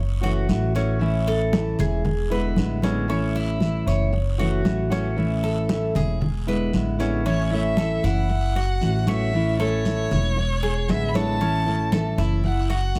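A relaxed, danceable Cuban son and guajira groove opens with a warm, metallic Cuban tres picking arpeggios on its doubled strings over a woody, thumpy upright bass up front, joined almost at once by a dark, full-bodied fingerpicked steel-string acoustic guitar with audible finger squeak, soft-handed damped congas in the background, and a raspy, vintage-sounding guiro tucked far back. At 7.3 seconds a rich, distant bowed violin takes the melody with expressive vibrato and portamento, colored by tape echo, as the F#m7, A and E7 progression cycles on. The close, detailed recording carries light reverb, and the clip is cut from a longer piece.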